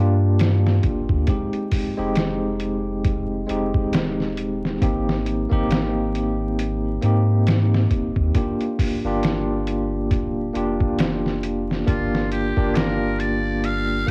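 A loping 4/4 groove with a lazy sixteenth-note swing drives this smoky, brooding trip hop excerpt, carried by a pitched-down, compressed sampler-style drum kit that enters at 0.4 seconds with a thumpy kick, a medium-tuned snare and hi-hat, all coated in gritty cassette-tape character. Beneath it, a soft dub sub bass hums deep and round from the start, its sustained tones sitting low. Up front, a bell-like, barky tine electric piano voices the minor-seventh and major-seventh chords, its clean tone shimmering through tremolo and tape echo. At 11.9 seconds a trumpet with a metal mute takes the melody, buzzy and thin, with vibrato, scooped notes and a growling, raspy jazz-style edge. Light reverb and a digital ambience frame the whole, while vinyl crackle and a home-cassette quality lend it a dusty, vintage haze.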